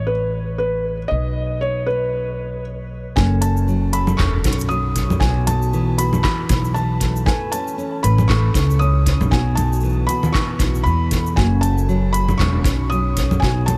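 A felt-muted upright piano carries the melody from the start, soft and intimate with audible action noise and a short sustain, trailed by a diffuse ambient delay, while a woody pizzicato upright bass sits up front beneath it in this playful, delicate folktronica excerpt at 117 BPM in B mixolydian with a light 16th-note swing. At 3.2 seconds a fingerpicked nylon-string guitar enters with deep classical arpeggios in its own diffuse delay, joined by a dark, tight kick played with brushes and an overdriven organic electronic kit of congas, handclaps, crisp hi-hat and shaker re-recorded in a large room. The chords move through F#m, B7sus4 and Aadd9, all set in a small room ambience with light reverb.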